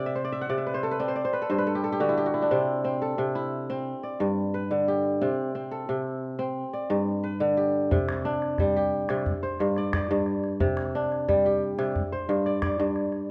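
A worn, warbling cassette sound with drifting pitch sits over a wet recital-hall reverb, framing this joyful cut from a longer piece of West African string and xylophone music at 89 BPM in C lydian, tuned to A4 = 444 Hz. An up-front kora plays ringing, crisp fingerpicked arpeggios over alternating C and G harmony, opening with a fill in the first 2.5 seconds. A small calabash adds percussion from 7.9 seconds to the close.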